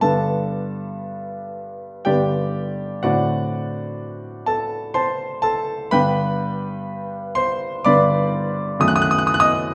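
A grand piano carries this brief romantic nocturne alone, its tone warm and natural with a short sustain, and it sits up front in the sound. The mood is yearning and wistful, in a triple metre shaped by a rubato feel. Across the passage, which runs from 0.0 to 9.7 seconds and is cut from a longer piece, the harmony moves from G to D7/A, back to G, and then to F#m6 at 8.8 seconds. The piano spans from F#2 up to F#6. A wet stone room reverb with a 1.2-second decay surrounds the playing, giving a sense of hearing it from further back in the room.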